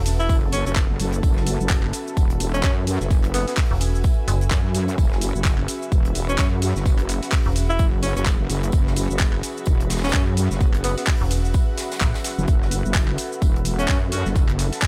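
The excerpt opens at once on a dark, moody analog pad holding F# minor chords alongside a hazy granular cloud pad, both pulsing under sidechain pumping, while short metallic FM bass hits cut through with overdriven bite. This is a swaggering, aggressive bass house groove at 128 BPM in 4/4, with a 16th-note swing that gives the beat a loose strut. A layered garage kit of bright hats, handclaps and cabasa and a very quiet, dry funk kit with a high-tuned snare and tambourine enter at 0.1 seconds, and a punchy, up-front electronic kick drives from 0.3 seconds. The heavy wobble bass, thick with detuned sawtooth unison, saturation and chorus, anchors the low end through nearly the whole passage. A bright alto saxophone carries the melody in a narrow low range with light vibrato and tape echo, and just before the end, at 13.8 seconds, a distant, roomy horn section adds brief stabs with tape echo.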